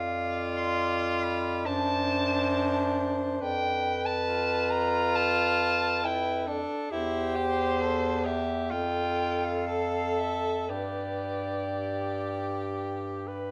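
Tender and lyrical, this 13.5-second passage from a longer classical piece for single-reed quartet moves with a flexible rubato feel, all four parts playing throughout. A soprano saxophone carries the melody with light vibrato and a distant, roomy sound, while a close-miked alto saxophone shapes the second line. A soft-attacked tenor saxophone provides accompaniment and a present bass clarinet anchors the low end, moving through harmonies from Dm/F to Fmaj9#11 and on to G, all set in a moderate recital hall reverb.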